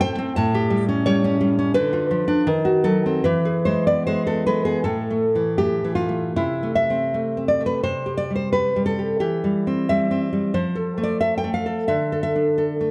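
Melancholic and wistful, this short romantic excerpt for solo classical guitar unfolds in a rubato two-beat metre, its fingerpicked nylon strings sitting up front with a deep, warm tone and audible finger squeaks, while a dark production and a wet recital-hall reverb surround the playing as the harmony moves from an opening A7 through a diminished chord to E before a second section begins at 4.9 s and drifts toward F and D.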